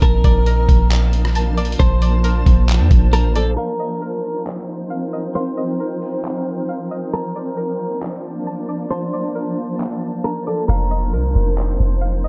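A clean electric guitar melody, softened by lush chorus, tape echo and a low-pass filter, leads this dreamy, floating atmospheric cloud-rap excerpt at 135 BPM in a half-time feel. It rides over a blurred, detuned granular cloud pad pulsing with sidechain pumping, while a twangy, nasal string-like resonator pluck plays arpeggios in the background and a gritty, pitched-down sampler-style drum kit adds a thumpy kick, handclaps, hi-hat and rim click. A deep, round 808-style bass sits up front until 3.6 s, drops out for a break, and returns at 10.7 s, all within a dark, dry production that moves between Bbmaj7 and F7sus4.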